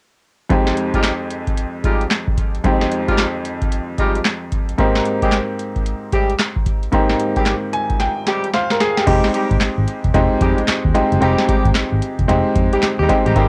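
A swung sixteenth-note groove from a booming analog drum machine drives this bouncy, slick R&B and new jack swing excerpt from 0.5 seconds, with its deep kick, crisp snare, handclaps, crash and metallic hats run through cassette tape. A bright, polished grand piano sits up front playing Fm9 and Abmaj7 chords while a jazz-style horn section adds loose stabs with light vibrato and octave doubling, and the piano and drums each play a fill just before 9.1 seconds. There a dark, round, foam-muted fingered electric bass enters for the closing section, under light reverb and a homemade cassette sound.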